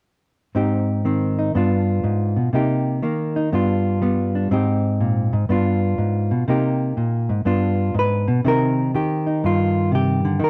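Smoky and cool, this short solo jazz passage cut from a longer piece swings at 122 BPM in 4/4. A dark, clean, fingered hollow-body electric guitar plays up front from 0.5 to 10.5 seconds through chords like Abmaj7, G7, Cm7 and Abmaj9, shifting into a new section at 8.4 seconds, all set in light reverb with a warm production.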